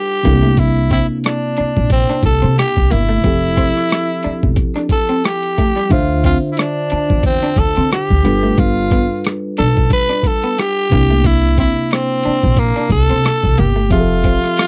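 A growling tenor saxophone and a worn, slightly out-of-tune tine electric piano open this sultry, introspective neo-soul and R&B excerpt together at 0.0 seconds, settling into an easy 90 BPM in 4/4 with a light 54% swing on the sixteenths. The saxophone carries the melody up front, bright and raspy with jazz-style vibrato and a slapback echo, while the electric piano supplies clean accompaniment through its built-in speakers. At 0.2 seconds a boom bap sampler-style kit drops in, its hi-hat, rim click and thumpy kick compressed and overdriven with a gritty, small-room character. Alongside it an electric guitar plays a picked, lo-fi second line, slightly broken-up through a small old amp with a subtle chorus, and from 0.3 seconds a woody, dark pizzicato upright bass anchors the low end. The harmony moves from C7 to Fmaj9, Dm7 and G9 before returning to C7 and Fmaj9, all captured in a dry, close 1970s-style studio sound tuned to A4 = 441 Hz.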